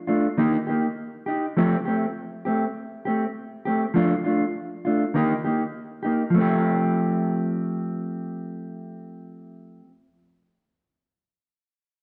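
A mellow, clean electric guitar plays alone from 0.1 seconds, fingered and up front with a dark tone and a touch of spring reverb, moving through Eb, Fadd9 and F6 chords in F mixolydian. This short excerpt of danceable highlife sits at 101 BPM in a straight 4/4, its warmth carried by a wet echo-chamber ambience. Near 6.3 seconds the music shifts into a new section that returns to Fadd9 before the guitar stops at 9.9 seconds.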